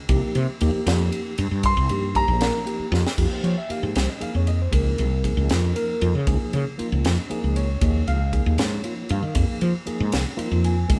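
A moderate stone-room reverb surrounds this slick, intense electric jazz fusion cut, taken from a longer piece and played live by a band in one room. In F minor at 78 BPM with a straight 6/8 feel, it moves through chords such as Fm9, Dbmaj9 and Eb7sus4. A woody, hollow-toned fretless electric bass sits up front and anchors the low end, while a mellow tine electric piano, clean through its built-in speakers, supplies the accompaniment. The crisp, polished fusion drum kit is airy, with a high-tuned snare, tight kick, ride and crash cymbals, and it adds a fill at 2.9 s. A present grand piano with short sustain takes the melody briefly at 1.7 s, placing a few high notes above the groove before the second pass of the section begins.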